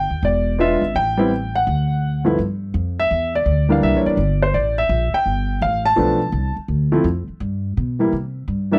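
Swinging eighth notes at 167 BPM in 4/4 drive this relaxed, sophisticated jazz piano trio passage in G mixolydian, cut from a longer piece, where an intimate concert grand carries the melody with deep bass and audible action noise over a woody, thumpy pizzicato upright bass on gut strings, both up front in a dry, close 1970s-style studio sound with light reverb as the chords move from E7b9 toward a closing C.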